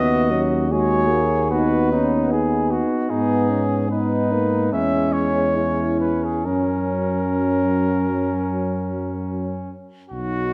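A brass band opens together in a serene, hymn-like passage cut from a longer classical piece, its phrasing flexing freely in a rubato feel. The close-miked cornet carries the melody with a warm tone and light vibrato, while the mellow flugelhorn sings a second line just beneath it. Further back, the trombone offers a smooth-topped accompaniment with vibrato, joined by a distant, roomy euphonium whose soft attack and vibrato blend into the texture. The tuba sits up front, giving the bass a punchy foundation. The harmony moves from B/D# to G#m at 3.1 seconds, then through C#m/E to F# at 6.5 seconds, all settled in a moderate concert hall reverb.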